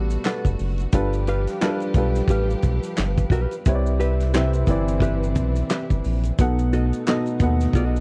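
A smooth, soulful neo-soul R&B piece at 88 BPM opens with an intimate baby grand piano, its action noise audible, over lush bowed strings in the background and a round, deep analog bass with a fast attack. At 0.1 s a tight, mid-forward soul drum kit of kick, snare, hi-hat and handclaps enters alongside saturated maracas and finger snaps in the background, and at 0.3 s a dark, clean hollow-body jazz guitar joins as a fingered second line with slapback echo. The swung sixteenths move through Gmaj9, G7, Cmaj7 and B7 in a dry, close 1970s-style studio sound that keeps piano, bass and drums up front.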